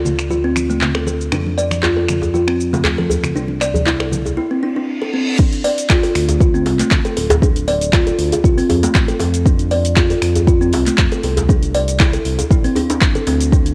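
A woody, airy kalimba opens this afro house excerpt up front, plucking bright, short arpeggios through a low-pass filter, cassette tape grit and tape echo, all pumping against the sidechain. Beneath it a smooth, mellow synth bass blending sawtooth and triangle tones holds sustained notes with the same pumping motion. Thick-skinned, damped congas sit in the background and stop at 4.2 seconds, while a tight, cracking djembe with hard hands and a deep house drum kit of metallic hats, finger snaps, handclaps, shaker and crash, overdriven and layered, carry the swung groove. A reverse cymbal rises at 4.7 seconds into the drop at 5.4 seconds, where a deep, overdriven electronic kick pushes up front. The chords move from D5 through F and Csus2 to Dm7, then return through F and Csus2, giving the spiritual, homemade cassette-tinged track a gently glowing, warm mood.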